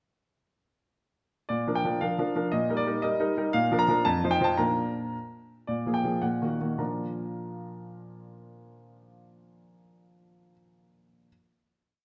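A clear grand piano opens at 1.5 seconds with a playful, graceful classical-period sonatina in 2/4, its up-front single-line melody set over repeated chords in a wet recital-hall reverb, slowing from 4.1 seconds into a short coda that darkens briefly before a final chord at 6.8 seconds rings out to the close.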